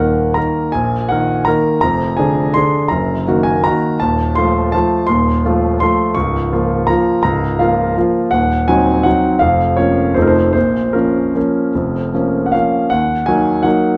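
A lilting three-beat waltz, pushed and pulled by rubato, carries this nostalgic, bittersweet classical fragment taken from a longer piece for solo grand piano. The piano sits up front with a brilliant, intimate tone, its long sustain blooming into a moderate recital hall reverb while the action noise of the instrument stays audible. The opening section gives way to a new one at 12.9 seconds, just before the fragment ends at 14.0 seconds.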